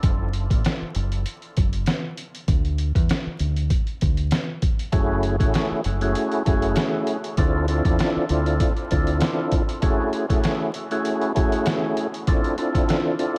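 A lightly overdriven tonewheel organ stands up front in this dark, moody boom-bap hip-hop excerpt, entering at 4.9 seconds with percussive attack, key click, chorus vibrato and a slow rotary speaker, its chords trailing off in dub echo. Before it arrives, the opening stretch is a break carried by a sampler-style drum kit and a fingered electric bass. The drums are compressed, pitched down and gritty, with a thumpy kick, a medium-tuned snare, rim clicks and hi-hat, all carrying a tape-warm, small-room character. Beneath them, the deep dub bass is round, punchy and dark, sitting low until it drops out at 9.2 seconds. The groove moves at 98 BPM in 4/4 with a light 16th-note swing, while the organ alternates between F#m9 and Dm9. Light digital ambience, an echo-heavy mix and vinyl crackle wrap the whole piece in a hazy atmosphere.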